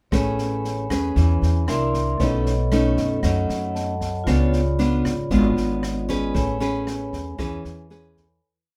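A lightly reverberant sound frames this short, breezy and romantic bossa nova piece in A major, moving at 116 BPM in a straight 4/4. Up front, a full-bodied nylon-string guitar plays fingerpicked classical bossa nova accompaniment with thumb bass and syncopated plucked chords, finger squeak audible, over a woody pizzicato upright bass with steel strings playing dotted root-and-fifth lines and an open jazz kit in a small room with a high-tuned snare, boomy kick, rim clicks and a bossa brush groove. A vintage, band-limited vibraphone with medium hard mallets and the motor off rings out metallic held chords in drop-2 voicings, adding a fill from 2.7 to 4.3 seconds, as the harmony moves from Amaj9 through C9, B9 and C#7b9 and back to Amaj9 before a fade-out from 6.3 seconds.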